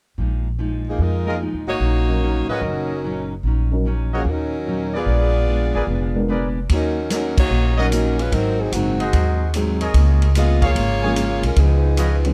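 Picked steel-string acoustic guitar and woody pizzicato upright bass open this dramatic, brassy big band swing excerpt in Eb minor at 148 BPM. A warm, vibrato-laden saxophone section joins at 0.9 s to carry the melody, followed by a dark, mellow baby grand piano and clear, tight trumpet-section stabs. A vintage drum kit with a punchy kick and a rolled-off top enters at 6.7 s, shortly before a full-band accent at 7.3 s, all within a dry, dusky production.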